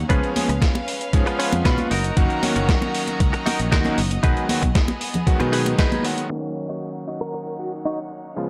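A background violin section holds sustained chords with light vibrato and a sidechain pump, over a warm fingered electric bass, a clangy vintage electric grand piano through tape echo, and a twangy, chorused clean guitar riff in this sensual, groovy nu-disco excerpt. A thumpy, up-front electronic kick sits alongside a gritty, overdriven sampler-style kit and high-tuned congas with hard hands. The bass drops out at 5.7 seconds, and the drums and congas fall away shortly after a band accent at 5.8 seconds. From 6.3 seconds a filter sweep runs over an Ebm7 chord, and a brief clean guitar melody with tremolo comes forward at 7.2 seconds, all within a dry, gritty hardware sound.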